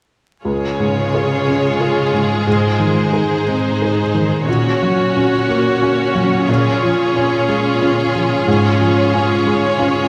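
Heard from further back in a scoring stage with a wet reverb and a layer of vinyl crackle, this brief cut from a longer cinematic film score unfolds in Db major at 90 BPM in a rubato 3/4, its mood uplifting and moving. A felt-muted upright piano sits up front with a soft, mellow, intimate tone, short sustain and audible action noise, while a rich, focused viola section, also close, fills in the accompaniment. A clear, distant violin section carries the second line with lush vibrato above a smooth, even cello bass, all four parts playing from 0.4 to 10.1 seconds as the harmony moves from Db through Ab, Gb/Bb and Bbm7 to Db/Ab.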